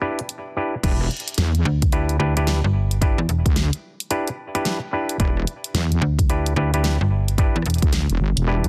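Swung 16ths at 110 BPM in 4/4 drive this playful, gritty glitch hop excerpt in E minor pentatonic. It opens on an Em7 as a stringy auto-wah clav stabs through a combo amp with sidechain pumping and digital delay, over a very quiet, moody analog pad. A pop drum kit with a fat snare, rim clicks, hi-hat and crash enters at 0.2 seconds. The drop lands at 0.8 seconds, bringing in a punchy electronic kick and a heavy, detuned wobble bass thickened with chorus and tube saturation. At 1.7 seconds a snappy FM bass with a metallic, slap-like attack joins up front in a dense, heavily limited mix with little reverb.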